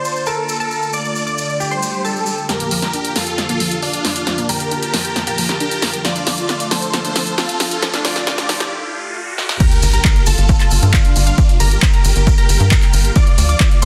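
Uplifting trance at 135 BPM in G minor, emotional and euphoric, cut from a longer piece: a huge, detuned supersaw lead carries the melody throughout with phaser, vintage 12-bit sampler grit and sidechain pumping over a thick, warbling unison pad, while a brilliant baby grand piano with audible action noise, a high background unison pluck and distant, grainy maracas open the passage. From 2.5 seconds a bright pluck plays arpeggios under a filter sweep as a punchy, overdriven analog drum machine with snare, handclaps, hi-hat and crash fills across the build-up, with a faint riser and swell rising beneath, before a short break. At 9.6 seconds the drop lands with an impact and sub drop, an up-front overdriven kick and the returning high pluck and maracas, joined at 9.8 seconds by a tight, nasal sequencer bass, all sealed in a dense, heavily limited modern master with light digital ambience.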